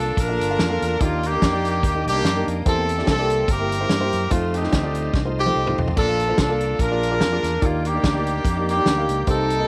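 This excerpt of soulful, uplifting uptempo gospel opens with a loose, up-front horn section carrying the melody with light vibrato, over woody, boxy upright piano, a very quiet, bright tonewheel organ holding sustained chords with chorus vibrato and key click, and a round, punchy fingered electric bass. An acoustic drum kit with a small-room sound, a medium-tuned snare and a punchy kick joins at 0.2 seconds in a swung 4/4 at 145 BPM, playing a fill from 5.1 to 6.0 seconds. The harmony moves from Bbmaj7 through Ebmaj7, C7 and F7, then back to Bbmaj7, Bb7 and Ebmaj7, all set in a studio ambience.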